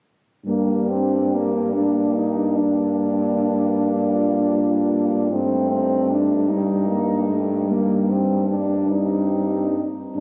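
In a rubato 12/8 sway, this yearning, melancholic classical fragment for horn quartet sets a very quiet, clear French horn melody above a warm, up-front second horn with light vibrato, a mellow horn accompaniment and a distant, roomy bass horn with vibrato and a soft attack, all four sounding together from 0.5 to 10.2 seconds as the harmony moves from Gm to Cm/G at 5.3 seconds, heard through a moderate cathedral reverb in a compressed phone recording with club reverb.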